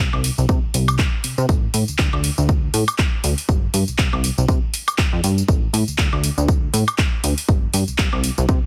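The groove runs at 120 BPM in 4/4 with a 56% swing on the sixteenths, giving this filtered disco house fragment a sensual, funky lilt. A plucky analog bass carries the low end from the start, ranging from G1 to C3 with a sawtooth, pulse and triangle blend, ring modulation and a fast-attack filter pluck that decays, all pushed through tube saturation, sidechain pumping and a low-pass filter. A house drum kit of handclaps, metallic hi-hats, tambourine and woodblock enters at 0.1 seconds, its percussion and hats pumping against the sidechain under studio reverb. The punchy electronic kick joins at 0.5 seconds, layered, tape-toned and sitting up front alongside the kit. Over the whole mix sits a heavily compressed, radio-like sheen from multiband compression, and the tuning rests at A4 = 439 Hz. Cut from a longer piece, the roughly 8.7-second clip holds a single section throughout.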